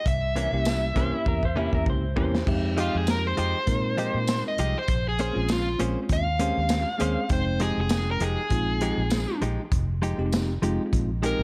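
A small, close room frames this short soul blues cut, played with a straight-eighth feel and a mournful, soulful mood. A dark, smooth lead guitar with overdrive sits up front from the start. At 2.5 seconds it opens into a solo over minor ninth chords that carries through to the end. Underneath, a vintage foam-muted fingered bass gives a round, amped low end. A crunchy breakbeat kit adds gritty, saturated kick, snare, hi-hat, crash and tambourine with a rolled-off top, and plays a fill just before the solo begins. A bright, scooped clean guitar, recorded direct and compressed, adds stabs through an analog delay, while a bell-like tine electric piano fills in the chords. Briefly, between 1.0 and 2.5 seconds, a slightly broken-up guitar through a small old amp plays a second line with analog chorus.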